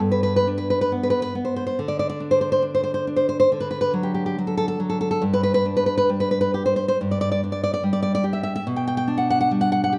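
Set up front in a moderate recital-hall reverb, this short cut from a longer romantic piece for solo classical guitar features a fingerpicked nylon-string guitar with warm fresh strings and finger squeak, spanning G2 to G5 in a sunny, nostalgic mood with a rubato feel.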